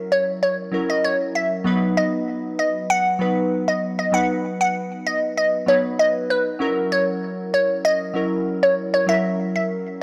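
A straight 4/4 groove at 97 BPM drives this joyful, sunny afrobeats fragment in F# mixolydian, cut from a longer piece and moving from F#7 to B/F# and back to F#7 at 6.6 seconds. Chorused glassy digital keys lay down bright, fast-attack accompaniment with a filter sweep, while a crystalline, nasal wavetable pluck carries the melody up front, its sine tone laced with a noise layer and trailed by analog delay. Light reverb softens a dry, gritty hardware sound with transformer saturation.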